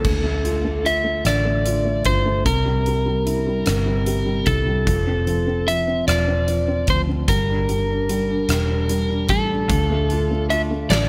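A slow six-eight sway at 50 beats per minute carries this tender, heartfelt pop ballad, where an up-front, slightly broken-up slide guitar played with fingerpicks sings the melody over a mellow felt-muted upright piano with audible action noise, a dark, foam-muted fingered electric bass and a huge arena drum kit with a fat snare, punchy kick and bright cymbals, while a clean, direct-recorded electric guitar enters at 9.7 seconds with tremolo and analog delay on its arpeggios as the chords move from Dm through C7, Fmaj7 and Gm back to Dm, set in a light small-room reverb.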